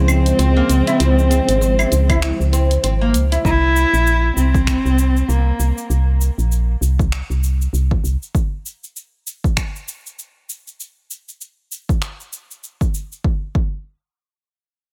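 Hypnotic and meditative organic downtempo at 98 BPM in C phrygian dominant, with swung sixteenths, where a dark, bowed cello carries an expressive, up-front melody with vibrato, portamento and tape echo over a smooth, chorused, sidechain-pumped analog pad, while a plectrum-plucked oud traces arpeggios through the same echo, a round, woody FM bass sits up front, and a deep house kit of cabasa, claves, finger snaps and shadowy hi-hat ticks along as a punchy electronic kick joins at 2.1 seconds, drops out from 2.8 to 3.4 seconds, then carries on through light digital ambience.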